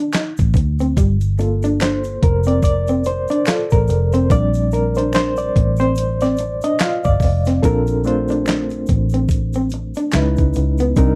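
A reedy, worn electric piano leads this relaxed, smooth neo-soul and R&B piece at 72 BPM with swung 16ths, soloing until 7.6 seconds with light overdrive, fast tremolo and a slightly out-of-tune tone, while an electric guitar through a small old amp adds a slightly broken-up, picked second line. A gritty, compressed sampler-style drum kit with thumpy kick, fat snare, hi-hat and handclaps sits up front alongside a dark, round, foam-muted fingered bass that enters at 0.4 seconds, and distant finger snaps and egg shaker stay in the background. The dry, close 1970s-style recording moves from Cm9 and Gm9 to Bbmaj9 at 7.6 seconds, then to Dbm9.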